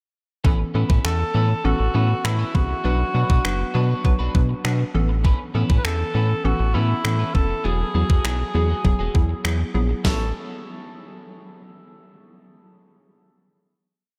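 A syncopated pop beat from a crisp 8-bit drum machine, with thumpy kick, snare, hi-hat and finger snaps, drives this euphoric, carefree dance-pop piece in A major at 100 BPM, where a round analog bass with chromatic approach notes and a hollow, detuned square pluck both pump under sidechain, a slightly broken-up electric guitar plays a choppy funk-style riff, a close-miked cor anglais with light vibrato sings a motif-based melody through analog delay from 1.0 s, and the dreamy, reverb-soaked mix settles on a final Aadd9 chord at 10.0 s.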